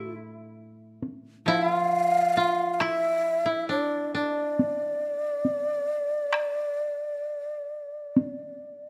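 Japanese traditional chamber music in D hirajoshi, moving in a free, rubato 4/4 around 61-70 BPM, with a solitary, austere mood in this short fragment cut from a longer piece. An up-front bamboo shakuhachi carries the melody with a breathy, hollow tone, vibrato and tongued notes, while a woody, fingerpicked koto plays a second line beneath it and a quieter koto adds low accompaniment that stops at 4.1 seconds. A close, dry taiko ensemble struck with hard sticks enters at 1.0 second, and light reverb sits over detailed close miking that carries some lossy compression artefacts.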